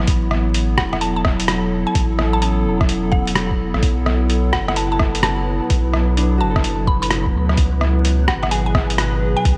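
Swung 16ths at 128 BPM in 4/4 drive this melancholic, rainy future garage piece, where a soft, tape-tinged electronic kick sits under a muffled, pitched-down sampler kit of hi-hat and rim click, over light reverb and vinyl crackle. A round sine sub bass and a warbling, nostalgic pad, both pumping with the sidechain, carry chords moving from A through Bm7 to C#m7, while a dark, clean fingered electric guitar with tape echo drifts in the background, pausing between 3.2 and 6.2 seconds. A woody FM mallet pluck carries the melody with chorus and analog delay, and from 4.4 seconds an airy, breathy wind-like noise texture hovers behind it.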